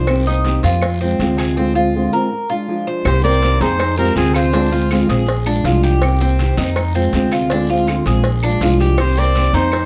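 A dark, lightly reverberant production carries this danceable, sultry Cuban son and guajira, where a growly pizzicato upright bass sits up front beneath fingerpicked steel-string acoustic guitar and metallic, double-strung Cuban tres arpeggios, with woody claves, a tight high-tuned cowbell, raspy guiro and grainy maracas in the background, while a punchy, vintage trumpet with light vibrato takes the solo melody at 3.1 seconds alongside a fingerpicked flamenco guitar second line, the pair returning together at 9.0 seconds.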